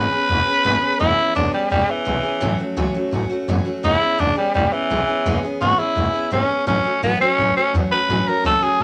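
A raspy, growling tenor saxophone leads this retro, rowdy rockabilly excerpt up front with vibrato, backed by a bright, full-bodied picked steel-string acoustic guitar playing E6 and A6 chords and a woody, thumpy pizzicato upright bass, all set in a moderate studio reverb.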